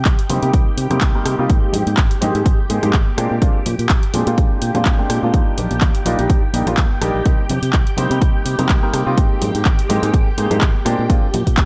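Lightly reverberant digital ambience frames this joyful, feel-good slice of filtered disco house, cut from a longer piece and running at 125 BPM in 4/4 with a gentle swing on the sixteenths, as a filter sweep spans the whole passage. Up front sits a layered, punchy electronic kick with a tape-warm edge. An analog drum machine supplies handclaps, rim clicks and hi-hats, the hats pumping with the beat, while very quiet tambourine and congas ring close and dry. A bright, direct fingered electric bass and a clear, present grand piano, the piano colored by phaser, 12-bit sampler grit and a low-pass filter, both pump with the beat. Above them a swirling vintage string machine holds sawtooth chords with slow attack and long release, thickened by ensemble chorus and phaser. The harmony cycles through Cm7, Abmaj9, Bb9 and Ebmaj9 before returning to Cm7.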